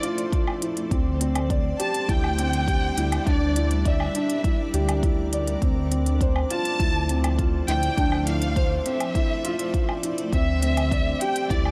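Piano and strings electronica in D minor at 102 BPM, moving and intimate, with a felt-muted upright piano riff sitting boxy and up front while a close, bowed violin section carries the vibrato-laden melody, both touched with delay. A cloudy, evolving granular pad holds sustained chords with its own built-in reverb and sidechain pumping, over harmony that shifts between Dm9 and Cadd9/D. Crisp, overdriven electronic hi-hat and woodblock run from the start, a deep, layered electronic kick joins at 0.3 seconds, and a rumbling, detuned saw bass pumps on D from 0.9 seconds in a dry, close-sounding mix.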